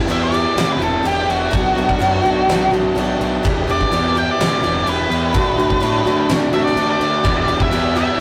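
This short, dark and cathartic slice of quiet-loud alternative rock moves at 126 BPM in a straight 4/4, opening on a picked steel-string acoustic guitar with woody, boxy old strings playing arpeggios alongside a bright, overdriven stack guitar riff set back in the mix. Almost at once an up-front octave-fuzz lead guitar takes a soloing melody, its tone dark and distorted, while a growly fuzz bass digs into the low end and a huge arena drum kit hits with a fat snare, punchy kick and crashing cymbals. The harmony sits in E minor, moving from Em to Bm, back to Em, then to D before returning to Em at 7.2 seconds. At that point a tight, bright distorted guitar joins with a brief riff in the background. The whole take has the rough, saturated feel of a rehearsal-room recording, with a short booth ambience around the players.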